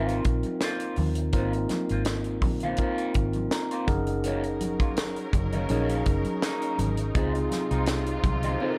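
A dark, lightly reverberant small-room sound frames this smooth 83 BPM slice of lush 1970s-style soul in Ab mixolydian with a gentle 16th swing, where a mellow tine electric piano comps and adds a fill from 3.2 s, a slightly broken-up wah guitar plays a riff, a round foam-muted bass and a tight funk kit with a high-tuned snare sit up front, ringing congas with soft hands stay in the background, and a veiled con sordino string section enters at 4.2 s with bowed sustained chords before a drum fill at 8.6 s.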